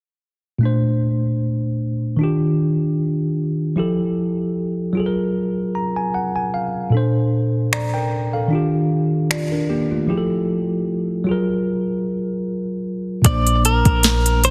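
Tender and dreamy, this contemporary R&B excerpt opens with a worn, slightly out-of-tune tine electric piano laying down lush major-ninth chords from 0.6 seconds, set in a generous hall reverb. The electric piano carries a fill of its own before an electronic drum kit arrives at 7.7 seconds, its soft kick, sharp snare, crisp hats and finger snaps sitting up front with a gritty overdrive and a gentle sixteenth-note swing. Just after a break, the harmony settles onto an added-ninth chord at 13.2 seconds, where a deep, boomy 808-style bass with a mellow, decaying sine tone drops in on a low root. Moments later a bright, picked clean electric guitar, recorded direct and compressed, takes the melody with subtle chorus and digital delay. The mix is dense and heavily limited, giving the tender material a polished, modern sheen.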